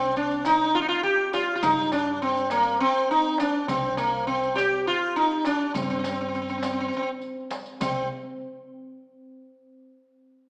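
In a straight 7/8, this melancholic, longing Turkish makam ensemble excerpt sets an up-front, buzzing, shimmering sitar melody with sympathetic strings over woody, thumpy pizzicato upright bass, while a riq with bright jingles and hard hands enters at 0.2 s and a small, high clay-shell darbuka played with soft hands joins at 0.3 s, both in the background, all wrapped in a wet recital hall reverb and a small speaker sound.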